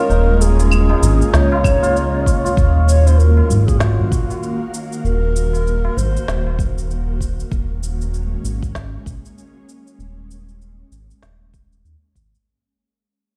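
A low wooden flute with vibrato and a chiff sings the melody through delay and shimmer reverb, over bright, ringing hammered santur arpeggios and an ethereal, detuned pad whose chorus and sidechain pumping give it a warbling, vintage breath. Beneath them, a smooth, dark synth bass sits up front and pumps with the beat, while an electronic shaker, claves and a woody snare are joined by a high-tuned tabla in the background and, from 1.6 seconds, a deep, tape-coloured kick. The piece is a hypnotic, meditative organic downtempo groove with a loose swing, heard in a stone-room echo; it begins to fade at 2.6 seconds, and the flute, santur and tabla drop away by 6.7 seconds, leaving pad, bass and beat.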